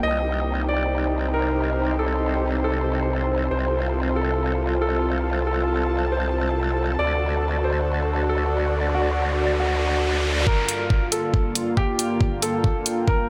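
A growling, wobbling bass sits up front in this heavy wobble dubstep excerpt, its saturated, formant-filtered tone thickened with chorus and overdrive as it holds low from the start until 10.4 seconds. Around it, in G minor at 138 BPM with a half-time feel, a warm grand piano carries the melody through a dub echo, while a lush, nasal sawtooth pad sustains chords and an airy, breathy pad adds a mellow, ring-modulated texture, both pumping with sidechain. The harmony moves from Cm to F/C, then D, before settling on Gm7, and the mood throughout is aggressive and chaotic. A downlifter opens the passage and a riser builds from 8.2 to 10.5 seconds, leading into a build-up where an overdriven, knocking electronic kick and a layered, filtered electronic hi-hat push forward with small room ambience under a sweeping filter. Light reverb ties the parts together, and the passage is cut from a longer piece.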